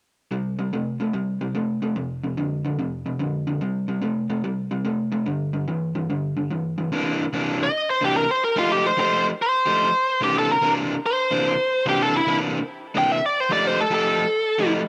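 Light reverb colours this blues recording, with both guitars sitting up front. It is a soulful, laid-back piece in C mixolydian at 146 BPM in 4/4, swung at 66% on the eighth notes and tuned to A4 = 436 Hz. An overdriven semi-hollow guitar plays a picked riff from 0.3 seconds to the end, its warm hollow-body tone moving through C5, F5 and G5 power chords before the harmony shifts to C9 and F9 chords. At 7.6 seconds a biting lead guitar enters with a bright, overdriven, picked melody, carrying the solo section through to the end of this cut from a longer piece.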